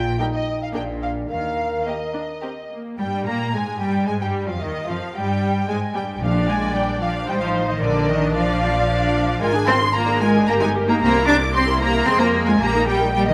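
A moderate scoring-stage reverb gives space to this lively, cheerful classical-period symphonic movement in Eb major, a quick 3/4 at 112 BPM played with rubato, where lush, vibrato-rich violins carry the melody over a second, more expressive violin line, rich violas in accompaniment, intense cellos and distant, smooth double basses on the bass, while clear French horns hold sustained chords only until 2.7 seconds and articulate hard-mallet timpani sound in the background from 6.2 to 8.6 seconds.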